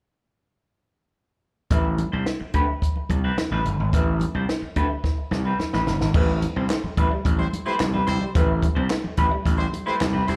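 A straight 4/4 funk groove at 108 BPM in A minor drives this cut from a longer piece. A compact cocktail drum kit with a tight kick, high-tuned snare, dark cymbals and handclaps sits up front beside a growly, overdriven slap bass, while very quiet, bright congas and a clean, warm semi-hollow guitar with wah and slapback echo accompany from an opening Am9. After a drum fill, a slightly broken-up, compressed second guitar enters at 6.1 seconds with a riff in the background through spring reverb, and a clear, punchy horn section with vibrato adds a second line from 7.4 seconds, all heard as a live gig through the venue's PA with club reverb and small-room ambience.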